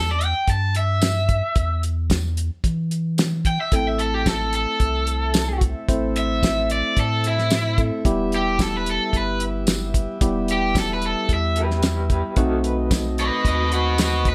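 A smoky, brooding soul blues cut from a longer piece, with light reverb and a straight-eighth feel, led by a bright, overdriven garage guitar up front over a smooth, dark sine sub bass and a thuddy, cloth-damped drum kit with a fat snare, tight kick, hi-hat and tambourine. At 3.7 seconds a barky tine electric piano joins through a combo amp, alongside a mellow horn section holding tight, octave-doubled chords in the background, as the harmony moves from Em to Am and back before landing on B7b9. Briefly, from 11.6 seconds, a second electric guitar through a small old amp adds a dark, slightly broken-up line with tremolo.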